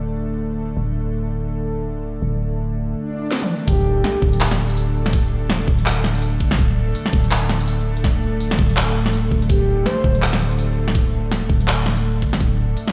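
A tense, string-like drone with vibrato, reverb and a sidechain pumping effect opens this spacious half-time drum and bass excerpt, over a growling, buzzy 808-style bass. A background swell and sub drop build from 3.0 seconds into the drop at 3.7 seconds, where a knocking electronic kick joins a kit of cracking low-passed snare, crisp hats, handclaps and toms, with a swung half-time feel. A soft, breathy flute-like synth lead with chorus and tape echo briefly appears, returning at 9.5 seconds, while the mix sounds as if played on a big sound system in a bare room with large studio reverb.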